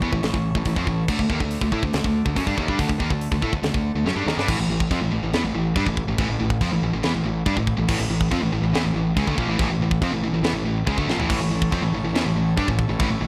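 A studio reverb surrounds this relentless, aggressive heavy metal excerpt, which moves at 141 BPM in a straight 4/4 in A phrygian dominant. Up front, a dark, overdriven guitar grinds out a sludgy riff, while a bright, high-gain distorted guitar plays a riff further back, both picked and spanning A2 to E4. A growly fretless bass, amped yet direct, holds the low end beneath them, and a tight acoustic kit with a high-tuned snare, china, crash, hi-hat and toms sounds gritty, saturated and mid-forward with a rolled-off top. A majestic full pipe organ, brilliant with mixtures, chiff and baroque voicing, sustains chords in the background over the opening A-to-D5 movement, drops out when the second section begins at 4.5 seconds after a drum fill, and returns at 11.3 seconds to close out the passage.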